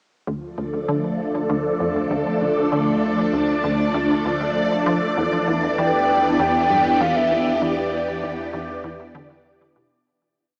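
Heard through a cassette-tape, small-speaker sound and soaked in a huge ambient reverb, this short, complete piece of sequencer-driven space music drifts at 98 BPM in a straight 4/4, hypnotic and mysterious in D dorian. A bright, swirling string machine sits up front with slowly shifting sustained chords, its vintage sawtooth tone colored by ensemble chorus and phaser as the harmony moves from Dm to Em7. Underneath, a juicy, squelchy blip pluck repeats a 16-step sequence in the low register, with analog chorus and tape echo, while a deep, round sine sub bass holds the root in the background and fades in. From 1.9 seconds a bubbling, resonant filter texture sustains a high held note with random filter steps, chorus and its own reverb. At 5.8 seconds a mellow, octave-layered lead enters with a wave-folded triangle-and-sine tone, chorus, vibrato and tape echo, singing arch-shaped motifs while the whole piece fades out from 6.8 seconds.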